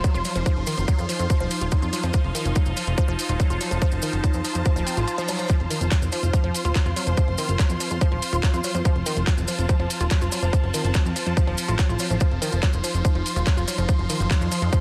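A dense, heavily limited modern master with light reverb carries this alien, hypnotic psychedelic trance excerpt at 143 BPM in a straight 4/4, resting on an F5 chord. A tight, overdriven electronic kick sits up front, joined by an overdriven electronic kit of handclaps and bright hats, while grainy, mellow maracas stay close but in the background. A punchy, funky analog bass with a fast attack and decaying filter pluck enters at 0.1 s and holds a prominent place, and a woody, percussive wave-folded pluck plays the riff through chorus and digital delay, its ring-modulated tone shaped by a filter sweep. Behind them, an evolving wavetable pad morphs through sustained chords with phaser and built-in reverb. A bowed studio string section adds a focused, smooth-topped ensemble texture with vibrato, and the pad, pluck and strings all pump against the sidechain. At 5.1 s the kick drops out briefly as a very quiet reverse cymbal slips in.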